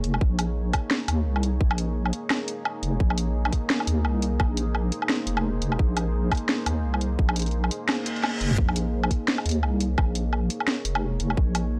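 A moody, mellow pad of detuned sawtooth chords in Bb minor opens this tense, spacious half-time drum and bass excerpt at 172 BPM, pumping under sidechain with chorus and its own reverb, while a deep, wobbling square-and-sine bass with chorus sits up front. A tight electronic kick and a layered drum kit with a cracking snare, hi-hat, toms and woodblock drive a swung half-time groove; at 7.9 seconds the kick drops out, a reverse cymbal enters at 8.0 and a drum fill follows at 8.2. The recording has a gritty, dry hardware character with transformer saturation and light reverb.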